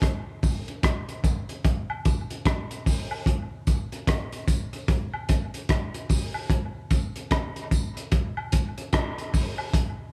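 A crunchy breakbeat drum kit sits up front, its hi-hat, tight kick and rim click carrying a dark, gritty saturation with a rolled-off top that keeps the sound smooth rather than bright. This is laid-back, spacious reggae in 4/4, with a relaxed swing on the sixteenth notes giving the groove its easy lilt. Tambourine and woodblock, joined by maracas and a group handclap, enter at 0.4 seconds and sit much lower in the mix, their compressed, saturated tone trailing off into dub echo. The drums play from the very start to the close at 10.0 seconds, all within a single section, in a studio room softened by a light reverb. The recording is a short fragment cut from a longer piece.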